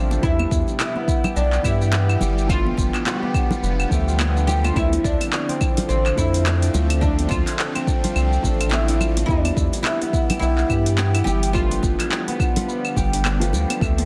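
A deep, round analog bass sits up front in this mystical, hypnotic organic downtempo excerpt at 106 BPM with a swung 16th feel over Em, G7 and Dm7 chords, alongside an overdriven electronic kick, an overdriven afro-pop kit of claves, handclaps, metallic hats and shaker, hard-handed congas in the background, a woody, plectrum-plucked oud melody with tape echo, ringing, fingerpicked concert harp arpeggios with delay, a mellow, felt-muted upright piano with delay and sidechain pumping, and a tense, detuned string-like drone with phaser and vibrato, set in a dense, heavily limited master with small room ambience.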